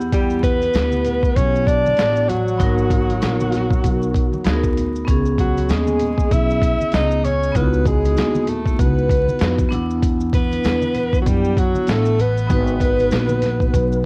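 A swung 97 BPM groove from a gritty, pitched-down boom bap drum kit with a thumpy kick sits up front in this cool, smoky jazz-hop excerpt in C# minor, where a woody pizzicato upright bass with transformer saturation and a ringing vibraphone with slow motor vibrato carry the minor-ninth chords, soft-handed congas and maracas murmur in the background, and a breathy, close-miked alto saxophone sings the melody over a mellow tenor saxophone second line with scooped notes, the drums, vibraphone and saxophones all tinted by cassette tape amid vinyl crackle and light room ambience.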